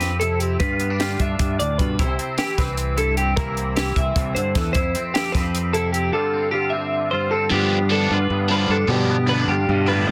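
The recording is close and barely reverberant, with a dense, heavily limited modern master. This short cut from a longer math rock and Midwest emo piece moves in a straight 7/8, wistful and intricate. A bright, compressed twelve-string electric guitar sits up front with clean picked arpeggios, over a scooped, twangy electric guitar that carries the accompaniment through an ensemble chorus. A growling fingered bass with overdrive pushes forward in its low register, while a compact cocktail drum kit, with a high-tuned snare and punchy kick, plays hi-hat, kick and snare until 6.0 seconds. At 7.5 seconds a double-tracked, overdriven electric guitar enters with a phaser-coloured riff as the harmony, having passed through Fmaj9, G7, Cmaj7, C7, Fmaj9 and G7sus4, lands on G7.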